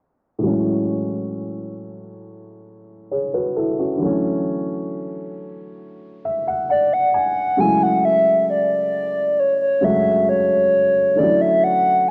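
A hollow, woody clarinet-like synth lead with chorus, tape echo and vibrato enters up front at 6.7 seconds to carry the melody in this longing, late-night R&B fragment, over a dark, boxy baby grand piano that plays accompaniment from the start and adds a fill at 5.8 seconds, while a filter sweep runs through the opening, all set in a lush hall reverb with the softened sound of a cassette home recording.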